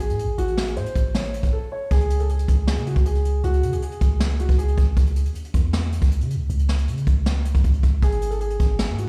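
A dark, boxy grand piano melody, filtered through a low-pass filter and trailed by analog delay, opens this brooding, menacing half-time trap and hip hop fragment together with a deep, boomy 808-style bass and an up-front brushed jazz kit with a medium-tuned snare, pausing for a brief break at 1.5 seconds, with the piano dropping out at 4.7 seconds and returning at 8.0 seconds, the whole mix ringing in the reverberant space of a bare stone room.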